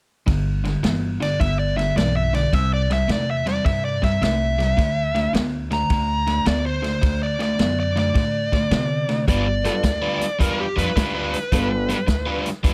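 A smooth, dark lead guitar with plate reverb carries the melody from 1.2 s in this soulful, laid-back electric blues shuffle. It rides over a bright, crunchy rhythm guitar riff, a thumpy pizzicato upright bass and a natural-sounding vintage drum kit with a tight kick and medium-tuned snare, while both overdriven guitars sit up front. A clear, polished upright piano with plate reverb enters lower in the mix at 9.6 s, and a light reverb surrounds this cut from a longer piece.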